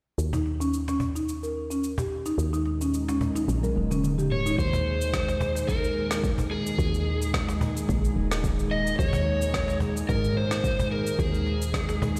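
Warm and earthy, this organic downtempo cut from a longer piece moves at 109 BPM with a gentle sixteenth-note swing, opening on an Ebsus4 chord. A soft, round FM bass, a woody-snared afro-pop kit with cabasa and toms, and a snappy, close cajon run throughout, while a buzzing, up-front marimba plays filtered, delayed arpeggios until 4.6 seconds, through a drum fill from 3.5 seconds, and a breathy, detuned pad with chorus and sidechain pumping enters at 2.4 seconds. A dark, overdriven slide guitar takes up the melody through tape echo from 4.3 seconds, and from 4.6 seconds a deep, overdriven electronic kick drives the second section, all heard through the stone-room reverb of a big sound system in a bare space.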